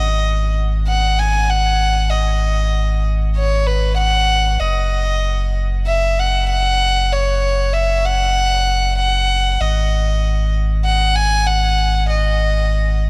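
The music moves in a straight, even 4/4 pulse, with a moving, cinematic mood suited to electronica built around piano and strings. A single bowed violin carries the melody throughout, up front, with a warm, pure, floating tone, a soft attack and an airy bow that picks up a slightly boxy edge. Its line sits high, touching G#5 at the start, settling on F#5 at 4.6 seconds and returning to G#5 at 9.6 seconds. Beneath it, a warm sine sub bass holds the low end from the opening to 13.1 seconds, its deep, round notes speaking with a fast attack and then sustaining, also placed up front. A light reverb and a small-room ambience give the pair a close, intimate space, and the passage is cut from a longer piece.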